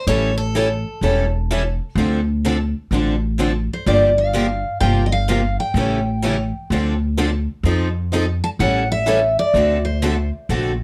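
Acoustic string swing in the jazz manouche style, bittersweet and virtuosic, cut from a longer piece: a full-bodied dreadnought guitar line sits up front for the opening 1.3 seconds while two boxy parlour guitars pick out the accompaniment with audible finger squeak. A woody, growly upright bass, plucked and thumpy, carries the low end up front throughout. From 3.7 seconds a bright concert guitar takes the picked melody high over the changing seventh chords, all within a light reverb.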